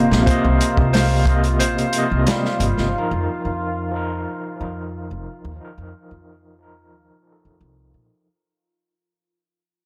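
This brooding, melancholic trip hop excerpt at 90 BPM in a straight 4/4 opens with an overdriven tine electric piano, a deep, dark ambient pad and a felt-muted upright piano together over a Cm7 chord. The electric piano sits up front with a barky, gritty bite, shaped by medium tremolo, a low-pass filter, tape echo and a filter sweep across the whole passage. Behind it, the pad holds sustained, detuned chords with a slow attack, chorus, built-in reverb and vintage 12-bit sampler grit. The muted upright piano plays soft, intimate arpeggios with audible action noise, sampler grit and delay, while a crunchy breakbeat kit of hi-hat, tight kick and medium-tuned snare, saturated with a rolled-off top, sits up front; the drums stop at 2.9 seconds and the piano at 3.0 seconds. From 0.1 seconds, a pizzicato upright bass, woody and thumpy on gut strings, carries the low end, staying on as the harmony moves to F7sus4, all framed by light reverb and a small room ambience as the music fades out.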